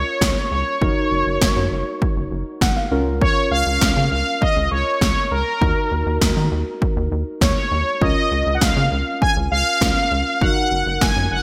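A bold, brassy analog synth lead carries the melody with chorus and vibrato from the very start, over muted, felt-like synth keys and a rubbery square-wave bass in this nostalgic, bright synth-pop excerpt at 100 BPM in Db major. Punchy 80s electronic drums enter at 0.2 seconds, their gated-reverb snare sitting up front, while the intimate keys add a brief fill from 2.3 to 3.2 seconds. The chords move through Db6, Gb6 and Ebm in a lush hall with bright 1980s-style digital sheen.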